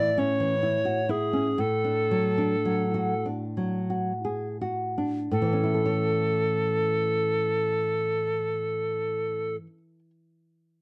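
A romantic duo for tenor recorder and classical guitar, this tender, lyrical excerpt in A major moves in a rubato 6/8 at roughly 27 to 46 BPM in dotted quarters, slowing through its opening passage before a second passage begins at 5.3 s over chords moving from A to D/A and back to A. The tenor recorder carries the melody with an airy, woody tone, vibrato and tongued notes with audible chiff, while the nylon-string guitar accompanies with dark, full-bodied fingerpicking that has an old-strings character. Both instruments sit up front in a close, detailed, nearly dry sound, the recorder ending at 9.6 s and the guitar continuing until 10.1 s.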